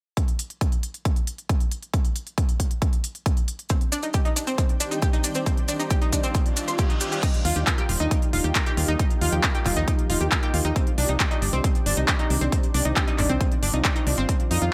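Uplifting and euphoric, this cut from a longer uplifting trance piece runs at 136 BPM in a straight 4/4, opening on a punchy, up-front electronic kick and a tape-warm big-room dance kit of crisp hats, handclaps and crash cymbal, with sidechain pumping on the hats and cymbals. At 3.7 seconds a detuned, bright sawtooth analog pluck arpeggiates through lush chorus and delay alongside grainy, close maracas, soon joined by a shimmering, ethereal granular pad with octave-up shimmer, as the harmony moves from Cmadd9 to Ebadd9 and back. A brief electronic reverse cymbal at 6.5 seconds leads into a dark, round FM bass at 7.5 seconds, sitting up front and pumping along with the pad and pluck inside a digital ambience.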